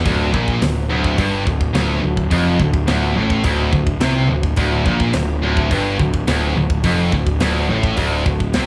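Vinyl crackle and small-room studio ambience frame this heavy, epic metal passage cut from a longer piece, where an up-front, bright high-gain guitar and a scooped, distorted second guitar drive a low riff over a dark, round fuzz bass and a polished, airy drum kit with a tight kick, medium-tuned snare and hi-hat.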